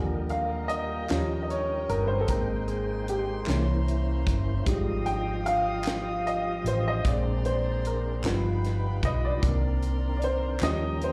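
Slow gospel in 6/8 at 50 BPM, counted in dotted quarters, in Eb major, with a soulful, reverent mood in this short cut from a longer piece. A woody, slightly detuned upright piano takes the lead as a solo throughout, up front and touched with slapback echo, over lush chords that move from Ebmaj7 through C7b9, Bb9 and G7b13 to Cm9. Beneath it, a tonewheel organ holds sustained chords with key click, chorus vibrato and a slow rotary speaker, while a soft-attack studio string section bowed sul tasto floats higher with a pure, smooth top. A dark, round hollow-body electric bass sits punchy and forward, and a tight funk drum kit with a high-tuned snare enters at 0.3 seconds, joined by crisp group handclaps from 1.1 seconds. The whole performance sounds like a live gig heard through the venue's PA, wrapped in club reverb and small-room ambience.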